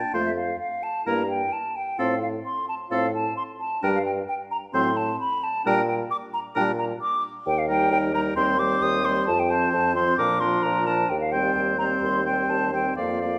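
A hollow, pure concert flute leads this cheerful, spirited classical-period movement for wind quintet, its tongued, vibrato-touched melody sitting up front and ranging from E5 to Eb6. Beneath it, a clear, close-miked oboe carries a second line between A4 and A5, while a smooth-topped clarinet keeps to the background with accompaniment in a narrow band from C4 to F4. A French horn with light vibrato and a soft attack joins the accompaniment at 0.1 seconds, and a mellow bassoon enters at the same moment to anchor the bass from Eb2 to Bb2, placed up front. At a quick 131 BPM in straight 4/4, the harmony moves from F through diminished passing chords into G minor and on toward Eb, C minor and Bb, giving the passage a brisk, purposeful drive. A moderate recital hall reverb of 1.8 seconds surrounds the ensemble, and this short cut from a longer piece plays through to 13.4 seconds.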